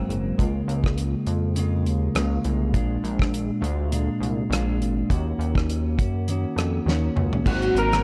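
A clean, compressed electric guitar with lush chorus and warbly pitch drift opens this mellow, lonely indie bedroom-pop piece in Eb dorian at 102 BPM, alongside a glossy, retro pulse-wave synth bass; a dry, up-front 70s drum kit with a fat snare, tight kick and shaker enters at 0.1 s and plays a fill at 6.9 s, before a worn, slightly out-of-tune tine electric piano slips in at the back and a dark slide lap steel takes the melody from 7.5 s, the mix soaked in dreamy plate reverb.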